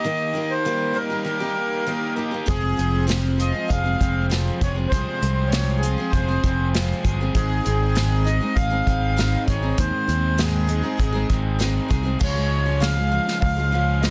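Reflective and dusty, this folk rock and heartland rock excerpt moves at a straight 99 BPM in F minor, with a reedy, slow-beating accordion carrying the melody up front over a picked steel-string acoustic guitar and a bright, overdriven, double-tracked garage guitar riff. At 2.5 seconds a round, direct electric bass and an airy unplugged drum kit played with bundle sticks join, the kit showing dark cymbals and a punchy kick, as the chords move from Eb through Fm and Ab to a Db turn at 12.2 seconds. The sound is dry, pressed into a dense, heavily limited modern master.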